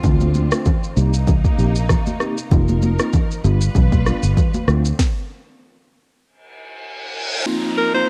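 Afrobeats at 97 BPM in C dorian with a mellow, smooth swing, where a deep-kicked, sharp-snared drum kit with 12-bit sampler grit, a round, foam-muted fingered bass and ringing high-tuned congas drive the groove under a clean tine electric piano and veiled, con sordino strings until a stop at 5.0 seconds, when a reverse cymbal and downlifter sweep in before a bright, vibrato-laden alto saxophone enters at 7.8 seconds, all with a cassette-tape home-recording character in a small room.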